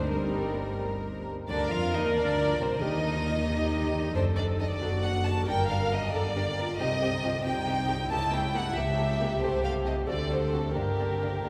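Cheerful and graceful, this quick classical-period movement for string orchestra moves in a straight 6/8 at 91 beats per minute in G minor, cut from a longer piece. An up-front violin section carries the melody with vibrato and a soft attack, bowed sul tasto for an intimate tone, while a second violin line sits in the background beneath it. A dark-toned viola section joins at 0.1 seconds with accompaniment, and the cellos and double basses share a soft, lightly vibrated bass foundation. After a brief opening, the harmony travels from G minor through C minor eleventh, E-flat and D over F-sharp, then passes a diminished seventh and a D7 before settling back on G minor near 10.8 seconds. The close, chamber-sized strings sit inside a very wet cathedral reverb with a long tail, lending the bowed ensemble a resonant, hall-like bloom.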